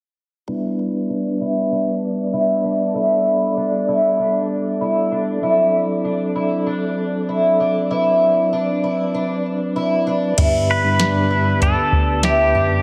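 Drenched in a lush hall reverb with a big arena sound, this dreamy, ethereal dream pop excerpt at 97 BPM opens with a flute-like tonewheel organ holding sustained chords through a fast rotary speaker and a shimmering, boxy fingerpicked twelve-string acoustic guitar playing arpeggios over G and D7 beneath a filter sweep. At 10.4 s a tine electric piano with medium tremolo takes the bass and an overdriven vintage rhythm box with a deep kick and metallic hats arrives, joined at 10.7 s by a twangy pedal steel guitar melody with slapback echo.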